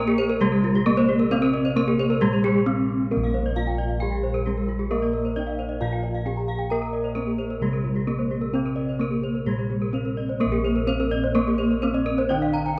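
A bronze metallophone struck with a wooden mallet carries the melody in this shimmering, ceremonial Balinese gamelan excerpt, its paired tuning producing beating tones and a tape echo trailing its notes over an uneven pulse. A bright, horn-mallet metallophone supplies accompaniment in the background, while two more metallophones play arpeggios: one airy with horn mallets, the other wooden-mallet struck and tape-echoed. Dark, round bossed gongs anchor the bass up front, and a moderate spring reverb surrounds the ensemble as the music moves into a new section at 10.4 seconds.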